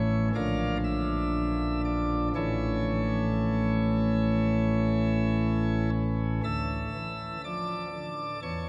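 This is a grave, solemn classical chorale for solo pipe organ in D minor, moving at a slow 59 BPM in 4/4 with a free, rubato feel and tuned to A4 = 444 Hz. The organ is voiced on light, bright flute stops with a sparkling, baroque character, and it sits up front across a span from A1 to E6. The harmony moves from Bb at 0.4 seconds to A at 2.4 seconds, then settles on D minor at 6.4 seconds, where the phrase turns into a new section. A wet cathedral reverb with a 6.4-second decay surrounds the instrument and lets each chord hang in the air. This short passage, cut from a longer piece, runs to 8.7 seconds.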